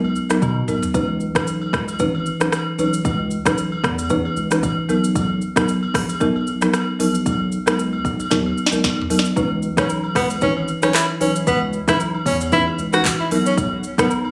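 A 114 BPM afrobeats groove in 4/4 with a lightly swung sixteenth feel rides on a produced electronic drum kit, with deep kick, sharp snare, smooth hats, handclaps, rim clicks, shaker and toms, and fills at 0.4 and 8.3 seconds, over a thick, saturated sine sub bass and distant agogo bells and woodblock. A dry, woody folk marimba played with medium mallets carries the C# dorian chords up front, moving between Bmaj7 and C#m9 in a sultry, smooth mood. At 9.8 seconds a breathy, close-miked tenor saxophone enters with a clear, jazz-style solo colored by vibrato and tape echo, all captured with a phone-in-the-room character in this cut from a longer piece.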